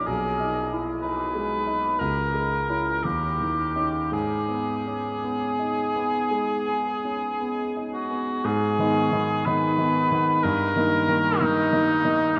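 Melancholic and solemn, this brief passage from a longer piece is a romantic classical duo for cor anglais and grand piano, played at a slow, unhurried pace with a flexible rubato feel. The cor anglais carries the melody throughout in its middle register, its warm, roomy tone touched with light vibrato and sitting up front while still sounding distant. The concert grand supports it as accompaniment from the start, its clear voicing reaching down into deep bass and ringing with an open, long sustain. The harmony moves from G#m/B through A#m7b5/C# and D#7 before settling on G#m, and a D#/G chord at 10.4 seconds leads toward the close at 12.4 seconds. A huge, wet reverb with a 7.3-second decay surrounds both instruments, placing the duo in a vast, echoing space.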